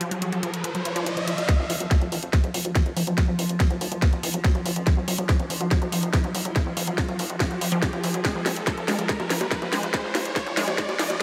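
Light reverb and digital ambience frame this intense, psychedelic trance excerpt, in which a lush, detuned unison pluck riff with delay and sidechain pumping rides over an evolving, bright wavetable pad with phaser in the background, while an electronic riser and filter sweeps build tension and overdriven drums of bongos, cracking snare and hi-hat play from the start, until at 1.5 seconds a tight, up-front kick with the same grit arrives with a build-up and drum fill, and a punchy, funky analog bass joins in the background at 1.6 seconds.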